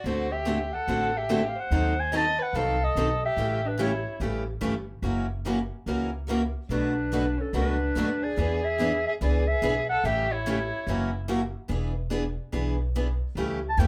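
A breathy, mellow clarinet carries the melody up front over a smooth bowed violin second line, a woody, thumpy pizzicato upright bass and two picked steel-string acoustic guitars, one boxy with finger squeak and the other in the background, in this charming, lively acoustic string swing fragment, with the clarinet and violin pausing at 4.2 seconds and returning at 6.7 seconds in a moderate club reverb.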